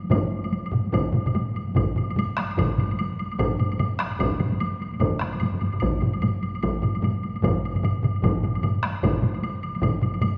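Driving and ceremonial, this fragment of Japanese traditional taiko drumming moves at 148 BPM in 4/4 with a 60% sixteenth-note swing and speeds up throughout, layering a close-miked taiko ensemble struck with heavy sticks, a compressed, saturated solo taiko part played with hard sticks in the background, a dry second ensemble set back in the mix, an up-front third ensemble with a vintage, band-limited sound that drops out at 9.9 s, and a woody woodblock, in a lush concert-hall reverb.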